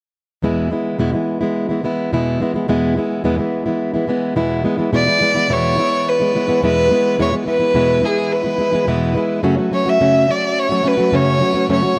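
A smooth, close violin with vibrato carries the bowed melody from 5.0 seconds, touched with delay, over a bright, full-bodied fingerpicked steel-string acoustic guitar that plays alone from 0.4 seconds and moves from E to F#m in this heartfelt, carefree pop excerpt at 106 BPM, set in a moderate plate reverb.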